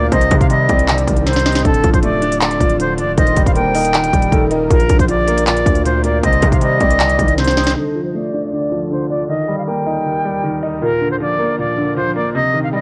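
An airy, vibrato-laced flute carries the melody over a clear concert grand piano accompaniment and a very quiet, ethereal pad, all heard from the first moment in this eerie, melancholic half-time trap excerpt with a lo-fi cassette grain. An up-front trap kit with a clipped kick, sharp snare, crisp hats and handclaps drives the opening alongside a heavy, saturated 808 bass and a velvety, chorused synth lead set in the background, with short drum fills around 1.3 and 7.4 seconds. Around 7.8 seconds the drums, bass and second line drop away, leaving flute, piano and pad under a filter sweep until the cut at 12.8 seconds.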